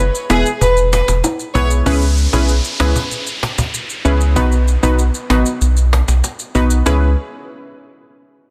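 Dancehall at 96 BPM in C# minor, this hypnotic, sultry excerpt from a longer piece rides on a round, deep analog bass with a dark sine-like tone and a filter sweep, joined by woody cajon played with soft hands and bright maracas and timbales in a small room. A punchy, detuned sawtooth chord stab with a sub octave and chorus plucks over chords moving from E to C#m7 and B. A lush, biting studio violin section with vibrato and delay sings up front from 0.3 to 1.7 s before an electronic downlifter sweeps under the music from 1.9 s, all held in light reverb and a dense, heavily limited modern master.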